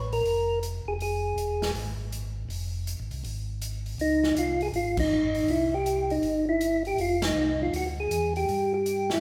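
A mellow tonewheel organ bass with key click and slow rotary speaker opens this bluesy, smoky soul jazz organ trio excerpt in F minor at 160 BPM in swung 4/4, soon joined by an up-front, round percussive organ melody with third harmonic percussion that drops out and returns at 4.0 s, and by an airy, polished big-band drum kit with punchy kick, crash, hi-hat, ride and snare, the band hitting accents at 4.9 and 7.2 s while playing live together in a large, wet studio.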